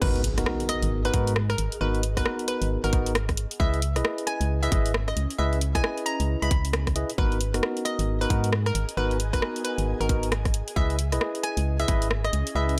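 A lightly reverberant mix opens on a background impact that ends by 1.8 s, setting off a soulful, bouncy two-step UK garage drop in G# minor at 134 BPM with a 61% swing on 16th notes, cut from a longer piece. An overdriven, layered electronic kick and a dry, up-front analog drum machine with crash, hi-hat and rim click sit under a dark, organ-like FM bass with tube saturation, while a clean tine electric piano plays stabs over alternating G#m7 and C#m7 chords. A hollow, detuned square-wave pluck carries the melody through chorus and tape echo, and a very quiet, ethereal pad adds an airy, mellow haze beneath.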